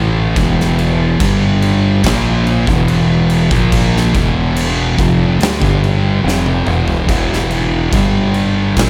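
Stoner and doom metal in E minor at a crawling 71 BPM, this ominous, sludgy excerpt pairs two dark, picked fuzz guitars, one distorted in the background and the other very quiet, with a punchy, overdriven fingered fuzz bass beneath them, while an oversized low-tuned drum kit with a boomy kick, gritty saturated tone and pumping big-room sound sits up front, entering at 0.4 seconds and playing a fill at 6.2 seconds over chords moving from E5 to G5 and Em in light reverb.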